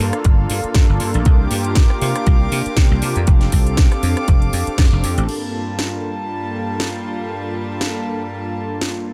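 Nu-disco excerpt at 119 BPM in G minor with a light 16th-note swing, sleek and cosmic, where a smooth detuned sawtooth analog pad with chorus, tape echo and sidechain pumping and a floating, softly bowed studio violin section hold sustained chords over Gm9, C9sus4 and F6, while a growly, foam-muted thumbed slap bass and a punchy, up-front electronic kick drive the groove with a house kit of cracking snare, metallic hats, rim clicks and crash until a band accent at 4.8 seconds, after which the kick drops out at 4.9 seconds and the bass at 5.3 seconds, leaving the pad, strings and kit in a light digital reverb.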